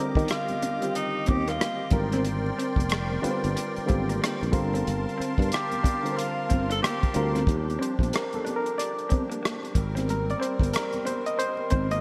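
A swung sixteenth-note groove in 4/4 drives this late-night, soulful R&B and neo-soul passage, cut from a longer piece. A soul drum kit of hi-hat, kick drum and rim click sits dark, dry and up front with a tight kick. Beneath it, a growly, punchy fretless electric bass sustains, while very quiet, high-tuned congas add a thin-skinned, vintage colour. A reedy, barky electric piano carries the chords, and a musette accordion holds shimmering sustained chords in a boxy small room. A tenor saxophone with light vibrato states the melody from a distant, roomy place until 7.3 seconds, trailed by a diffuse delay, while a lo-fi, slightly broken-up electric guitar picks a second line in the background through a phaser and ambient delay. From 7.5 seconds the electric piano takes a solo, and the whole mix is soaked in a dreamy hall reverb.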